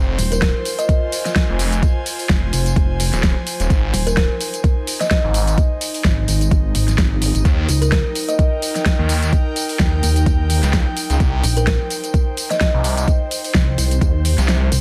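A thick, swirling detuned saw bass and a soft, breathy pad open this aggressive, gritty bass house excerpt in F minor at 128 BPM, with a 16th-note swing giving the 4/4 groove a slight shuffle. Almost at once a dark, heavy pluck wobble bass joins, saturated and compressed with chorus, while the phased saw bass sits up front beside it, both ducking under sidechain pumping. An overdriven, knocking electronic kick drives the track from 0.4 seconds, backed by a big-room kit of huge snare, metallic hats and tambourine, all treated with studio reverb. A woody, thumbnail-plucked kalimba drops in short, smooth phrases through a delay, most notably from 4.1 to 8.6 seconds, floating over the chorused, slow-attack pad. The harmony moves from Fm to Eb and then Cm, and the kick falls away at 14.5 seconds just before the cut.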